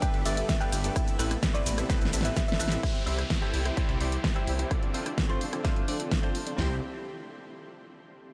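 A straight pulse drives this euphoric festival progressive house clip, cut from a longer track, which opens on a drop. A big-room electronic kit sits up front with a punchy kick, huge snare and toms, while a second layered kit adds hi-hat, ride, rim clicks, shaker and more snare, and a drum fill arrives at 1.9 seconds. Underneath, a thick, detuned saw bass with chorus and sidechain pumping carries the low end. In the background, a dense, compressed supersaw riff pumps through delay and a low-pass filter that sweeps from 2.8 seconds. A round, tine-like FM pluck carries a gentle melody with chorus and delay until 2.8 seconds, as a twangy, clean electric guitar adds phased, pumping accompaniment and a dark chamber string section holds very soft, intimate bowed chords, with a downlifter entering at 2.8 seconds. The harmony moves from Gadd9 and Amadd9 to C and F6 before landing back on C, all bathed in a huge, dreamy reverb that gives the anthemic mix a floating, soaked quality.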